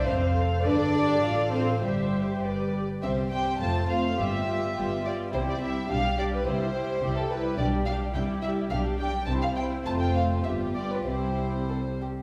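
A quick, cheerful classical-period movement for string orchestra in C major, moving at 96-108 BPM in a rubato 2/4, with a soft-attacked sul tasto violin section carrying the melody over a second violin line, woody viola accompaniment with vibrato, a rich cello section and an up-front dark double bass, all set back in a wet recital hall reverb and cut from a longer piece.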